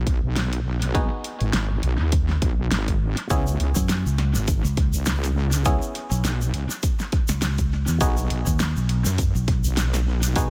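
Gritty and swaggering, this glitch hop cut from a longer piece struts at 102 BPM with a swung sixteenth-note feel, moving from B6 to C#m7 and back. A heavy, saturated wobble bass with a chorused, detuned sawtooth edge sits up front beside a punchy electronic kick and a pop drum kit's fat snare and warm hats, while a stringy, overdriven muted clav punches out stabs through delay and sidechain pumping. A grainy, bright tube shaker joins at 3.3 seconds, and a direct, amped fingered electric bass adds a second low line from 3.8 to 9.6 seconds, all inside an echo-heavy digital ambience.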